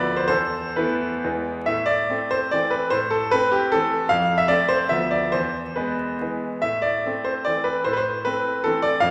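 A bright, brilliant concert grand piano sits up front with a deep bass, playing alone through this capricious, nostalgic romantic triple-time dance in A minor, its dotted rhythms and rubato moving between 123 and 165 BPM in 3/4, opening on a short suspended-to-dominant passage before settling into the home key at 1.7 s, all bathed in a wet scoring-stage reverb with a vinyl crackle, in a brief passage cut from a longer piece.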